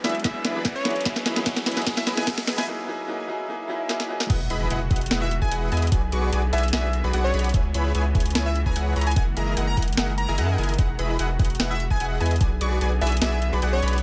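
This euphoric, lush future bass excerpt opens on a build-up in E lydian at 148 BPM with a half-time feel. A brilliant grand piano, a catchy, punchy plucky unison lead, a huge, thick detuned supersaw riff with vintage 12-bit sampler grit, and very quiet, distant bowed strings sound together over a tape-warm trap kit's sharp snare, hi-hat and crash, a knocking electronic kick and a background riser. Drum fills drive the build until a short break at 2.7 seconds, and a swell carries into the drop at 4.3 seconds, marked by an impact, where the piano stops. There a deep, saturated sine sub bass enters up front with a lush, ring-modulated unison pluck playing arpeggios in the background, and the lead, after a brief gap, returns with its delay. Sidechain pumping runs through the lead, piano, supersaw, pluck and sub, the piano also carries dub echo, and the chords cycle from Bm6 through C#m7 and F#13 to Emaj9, all set in light reverb and digital ambience.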